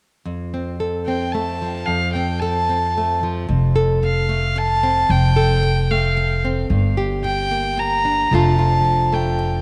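A fingerpicked nylon-string guitar opens this nostalgic, pastoral excerpt of acoustic folk in 3/4, its bright, small tone setting the accompaniment from 0.3 seconds. At 1.1 seconds a single bowed fiddle takes the melody in a high register, its gut-string voice nasal and reedy, touched by a slapback echo. The upright bass joins at 3.5 seconds, plucked and woody on steel strings, adding a low foundation as the music moves into a new section. All three parts sit up front, with the harmony resting on F before shifting to Gm and then Dm/F near the end. A moderate plate reverb with a long tail lends the small ensemble a sense of space.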